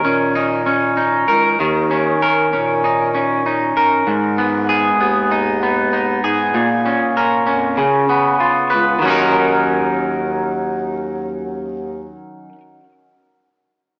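A twangy, slightly broken-up electric guitar sits up front, playing fingered arpeggios through lush chorus and analog delay, while a dark bass clarinet carries the bass line in a classical style beneath it in this melancholic, hazy dream pop fragment from a longer piece, all bathed in wet spring reverb within an echo-heavy mix that has a small-speaker sound, with a new section arriving at 9.0 s.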